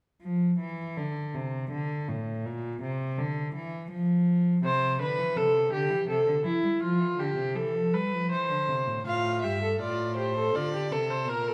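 A nasal, lightly vibrato viola enters at 4.6 seconds as the accompaniment in this stately yet lively baroque-style fugue for string quartet, cut from a longer piece in F major at 81 BPM in 3/4, tuned to A4 = 444 Hz. The fugue opens at 0.2 seconds on a rich, close cello bass, and a warm, gut-string violin adds a second line at 9.1 seconds. All three are bowed in period style with a reedy edge, set in a moderate recital hall reverb with a dark production.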